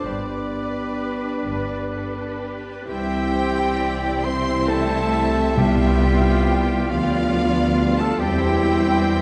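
Heard from further back in a concert hall, this full symphony orchestra is bathed in a wet reverb. It is a slow, lyrical romantic classical movement in 6/8 with a free, rubato feel, cut from a longer piece. A lush violin section carries the melody with focused vibrato, while a softer second violin section, a pure, hollow silver flute, an oboe and a distant clarinet weave second lines in the background. Violas and a mellow bassoon supply the accompaniment, smooth cellos and clear double basses hold the bass, and a very quiet French horn section sustains chords. At 2.9 seconds a bright, roomy trombone section and a vintage-toned tuba join, both barely audible, and timpani with medium mallets on calf heads enter at 5.6 seconds. The harmony moves from G to C, then G7 over C, settling on C/E.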